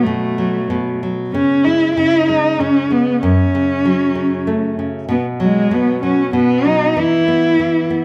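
A single bowed cello carries the melody in this gentle, sleepy children's lullaby, its dark tone shaped by vibrato, soft attacks and sliding portamento, with a smooth top that keeps its expressive line soothing. Beneath it, a fingerpicked nylon-string guitar plays accompaniment with a full-bodied, deep classical sound, and finger squeaks can be heard on the strings. Both instruments sit up front and play together from the first moment to the end of this 8-second fragment, the cello somewhat louder than the guitar. The music moves at 96 BPM in a steady 3/4 lilt, with the harmony passing through B5, C#5, F#m, B5 and E5. A moderate recital hall reverb, lasting about 1.5 seconds, gives the pair a soft, roomy glow, and the clip is cut from a longer piece.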